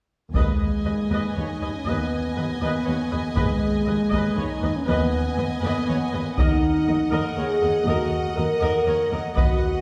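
From 0.3 s, a taiko ensemble struck with hard sticks, mellow yet punchy French horn chords, cellos bowed with expressive portamento, clear, focused double basses on a low Eb, warm violas and rich, lightly vibrato violins sound together in this epic, heroic orchestral film cue at 120 BPM in 3/4, shifting from Abm/Eb to Ebm at 6.4 s, heard from further back in a wet scoring-stage reverb with some lossy compression artefacts in this fragment of a longer piece.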